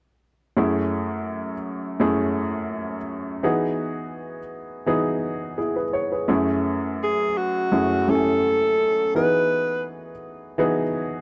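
An up-front alto saxophone with light vibrato, scooped notes and a smooth top enters at 7.0 s for a brief, punchy pop-style solo over an intimate baby grand piano, whose audible action noise and short sustain carry F#m9 and Emaj7 chords from 0.6 s, giving this smooth, romantic soul fragment, cut from a longer piece, a dry, close 1970s-style studio sound.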